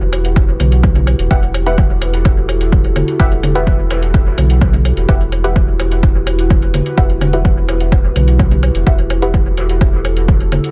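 Nocturnal and meditative, this dub techno excerpt in E minor moves at 127 BPM in a straight 4/4, driven by an overdriven, up-front electronic kick, metallic analog hi-hats, layered overdriven woodblock and congas with dub echo, and a round, sine-based sub bass that pumps against the sidechain. A dark, moody analog pad with chorus and phaser sustains an Emadd9 chord, while a muted, detuned sawtooth dub stab with an evolving filter sweep enters at 1.3 seconds and a soft, mellow stab with phaser sits in the background from 1.7 seconds, both stabs trailing dub echo and pumping with the pad. The mix is dry, with very little reverb.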